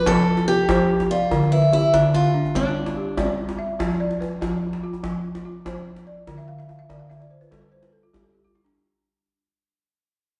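A straight 12/8 pulse carries this hypnotic West African traditional string and xylophone piece, cut from a longer work and fading throughout, where a boxy, up-front picked acoustic archtop guitar with audible finger squeak plays the melody until 3.6 seconds, a woody, round balafon struck with soft rubber mallets spins arpeggios and a fill from 6.4 seconds, and a distant, medium-tuned djembe with metal rattles and hard hands adds a fill at 8.4 seconds, all set in a reverberant recital hall.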